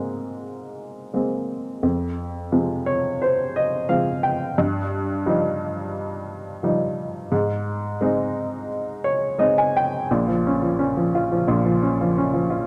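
A clear, woody upright piano carries this brief folk piece entirely on its own, sitting up front and present, with notes of short sustain ranging from Bb1 up to Ab5. The mood is reflective and heartbroken, moving at 87 BPM in a straight 4/4 feel in Bb dorian, with the instrument tuned to A4 = 436 Hz. The harmony passes through Abadd9, Fm, Ebadd9/G and Ab before a new section arrives at 10.1 seconds on Bbm. A moderate plate reverb with a 2.3-second tail surrounds the piano, and the overall production is dark and warm. Cut from a longer piece, it lasts 12.7 seconds.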